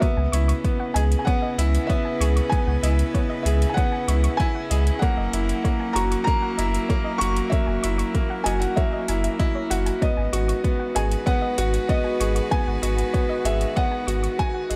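An intimate sound opens this 14.8-second cut from a longer piano and strings electronica piece, set at 96 BPM in a straight 4/4 in C# dorian, with a hypnotic, melancholic mood that moves through C#m7, F#7 and G#m7. A felt-muted upright piano carries the melody in a soft, boxy tone with audible action noise, wrapped in tape echo and shimmer reverb, while a bright, woody, slightly detuned upright piano sits up front playing a riff in its lower register. A bowed string quartet holds rich, smooth sustained chords with vibrato in the background, and a dark, warbling pluck with a vintage cassette tinge plays arpeggios through chorus, sidechain pumping and shimmer. Underneath, a deep overdriven kick and metallic electronic hi-hats drive the beat, and a round sine sub bass entering at 0.2 seconds pumps against the kick. The whole passage plays as a drop with light studio reverb before fading out from 13.4 seconds.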